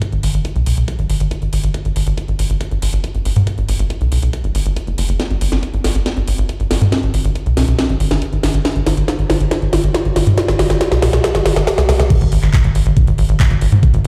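A knocking, tape-tinged electronic kick and a layered techno drum kit open this psychedelic trance excerpt at 139 BPM in G# minor, with a tight sequencer bass arriving at 0.1 s. The mood is alien and intense, carried by a straight 4/4 pulse. The kick is filtered and sounds re-recorded in a small room, while the kit brings a cracking snare, metallic hi-hats, handclaps and crash cymbal, both drum parts sitting up front. The bass is punchy and driving, blending sawtooth and square waves with a plucky filter, a moving notch, fast attack and mellow decay across F#1 to G#2. A build-up with a drum fill from 5.2 s leads to the drop at 12.1 s, all heard through large studio reverb as if played on a big sound system in a bare room.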